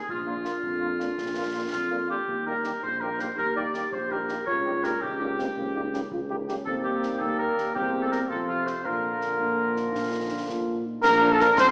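A spirited, proud military-style march for wind band in 6/8 at 110 BPM, in Eb major moving to Bb major from 6.7 s, where a smooth-topped cornet solo carries the melody over an up-front woodwind section and a mellow euphonium on second lines, a roomy tuba bass, background French horns, and dry, close concert bass drum, snare and dark-toned clash cymbals, with a hollow wooden piccolo with vibrato and a tight, very quiet trombone section appearing only at 11.0 s, all in a wet recital hall with a small-speaker sound.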